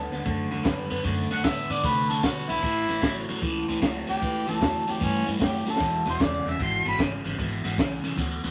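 A moderate studio reverb surrounds this laid-back, soulful electric blues shuffle as it swings along at 152 BPM in A mixolydian. A roomy harmonica leads with a jazz-style solo full of light vibrato and scooped notes, dropping out at 7.0 seconds, while a bright, overdriven electric guitar with phaser plays a compressed, picked riff up front. Woody pizzicato upright bass and a dark, smooth cocktail kit with punchy kick, high-tuned snare and ride cymbal hold the groove over a D7 to A7 to E progression, with a drum fill at 5.6 seconds in this fragment of a longer piece.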